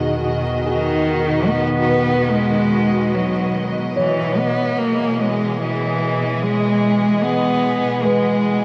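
A rich, expressive solo cello sings the melody up front from 0.7 s, with vibrato and portamento, over a dark, close string section holding sustained sul tasto chords on Emaj7 in this weightless, peaceful ambient piece in E major at 73 BPM. A felt-muted upright piano plays soft, boxy arpeggios in the background, while a round sine sub bass adds depth until 3.9 s. The cello, strings and piano are bathed in shimmer reverb, the cello and piano also carry delay, and the whole sound sits in a huge 8.8-second reverb with the worn, warbly pitch drift of old cassette tape.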